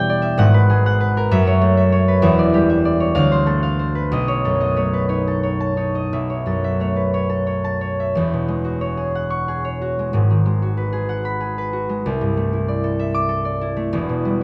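A solo concert harp, fingerpicked, ringing and placed up front, opens this dreamy, serene classical fragment in a rubato 6/8 at roughly 58-66 BPM, tuned to A4 = 441 Hz and spanning E1 to D6 as it moves through G#m7, F#m7, Em7 and Dm7 to B9 and B9sus4, before a second section at 8.1 s passes through E69, G#m7 and C69 to close on Em7, heard through close, detailed microphones with light reverb.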